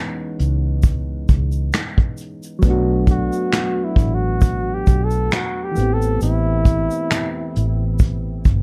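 A swung 4/4 groove of brushed drums with finger snaps, hi-hat, punchy kick and snare, roughened by 12-bit sampler grit, sits up front with a round, foam-muted electric bass and a faint, grainy tube shaker beneath soft, chorused electric-piano-like synth keys with a cassette-tape tint, while a breathy, mellow flugelhorn with vibrato and scooped notes enters at 3.1 seconds and stops at 8.0 seconds in this nostalgic, melancholic lo-fi hip hop fragment, dark and dry, moving through C#m7, Bm7 and Am7.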